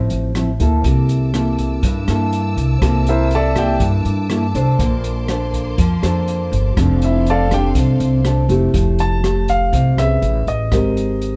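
A warm grand piano carries the melody in this breezy, sophisticated bossa nova excerpt in F major at 122 BPM. It steps in briefly at 3.1 seconds, then returns at 7.0 seconds to play through to the end, intimate and up front with audible action noise and a long sustain. Beneath it, a thumb-plucked nylon-string guitar with fresh strings gives a dark, classical accompaniment, while a woody pizzicato upright bass sits close in the mix, and an open jazz drum kit, recorded in a small room, keeps a smooth straight 4/4 on hi-hat, rim click and a boomy kick. A lush symphonic violin section holds bowed chords with vibrato and a focused, silky top, sitting low in the balance until 8.7 seconds. The harmony moves through Dm9, C13, Bbmaj9 and F6, then shifts to Fmaj9, Amaj9 and Abmaj9 in the closing section, all within a dry, dusky production.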